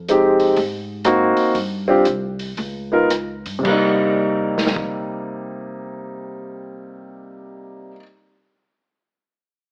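A swung 4/4 groove that slows over the first 3.7 seconds opens this moody fragment of a jazz piano trio, where an intimate, up-front concert grand with audible action noise and plate reverb carries the melody over Fm9, Ab9 and Gsus4 before a brief break lands on Cm7, supported by a woody pizzicato upright bass and a dark, small-room drum kit with a boomy kick, rim clicks and dusky cymbals that drops out at 4.9 s, all filtered through a moderate studio room and an AM-radio tone.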